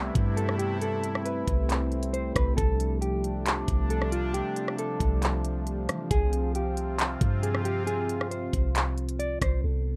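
A detuned sawtooth pad with chorus, sidechain pumping and a low-pass filter sustains bright chords over a deep, round 808-style bass from the start of this dreamy, blissful atmospheric cloud-rap excerpt at 136 BPM in a half-time feel, as an up-front trap kit of knocking kick, crisp hats, handclaps and rim clicks enters at 0.2 seconds and a dark, clean, fingered electric guitar melody with tape echo and a low-pass filter drifts in at 0.4 seconds, all moving through Am9/C, G9sus4/C and Fmadd9/C in a rough home demo mix with light reverb.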